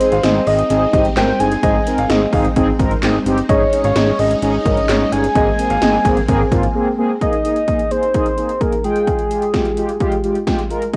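Synth-pop in Ab major at 129 BPM, this bright, upbeat clip, cut from a longer piece, moves in a straight 4/4 through a home cassette recording with a moderate small room around it. A soft octave-layered synth lead carries the melody with a round, triangle-and-sine tone, vibrato and chorus, while mellow synth brass, brassy, detuned and up front with ring modulation and a filter sweep, fills in the accompaniment. Punchy 80s electronic pad drums drive the track with a gated snare, metallic hi-hats, handclaps and an overdriven edge, and a fat, saturated analog bass with a filter sweep anchors the low end until 6.7 s. In the background, a swirling string machine holds phased chords and a natural baby grand piano adds a second line through analog delay. After a brief break at 6.7 s, the strings drop out at 7.2 s as the harmony shifts from Absus2 toward Fmadd9 under the lead, brass and drums.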